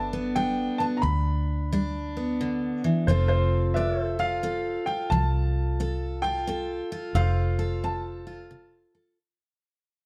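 Honky-tonk classic country in a heartfelt, easygoing 3/4 at 88 BPM with a gentle swing, where a clear, woody upright piano carries the melody in plate reverb over a bright, full-bodied picked steel-string acoustic guitar with audible finger squeak, a round, foam-muted vintage electric bass up front, and a clean pedal steel guitar adding sustained chords with volume swells in the background, moving from Gadd9 to F in a dark production before fading out from 7.2 to 9.2 seconds.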